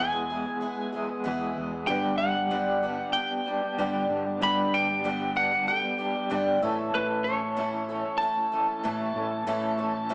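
Heard as a small-speaker, live-in-one-room take bathed in a large studio reverb, this hopeful, jangly rock fragment in A mixolydian at 95 BPM puts an up-front, slightly broken-up slide guitar melody played with fingerpicks over a compressed electric guitar riff through a small old amp with tremolo, a shimmering, octave-doubled twelve-string acoustic with finger squeak, a growly, round fingered electric bass, and a dark, woody, very quiet upright piano that adds a fill from 0.9 to 1.9 seconds as the chords move from E to G to A.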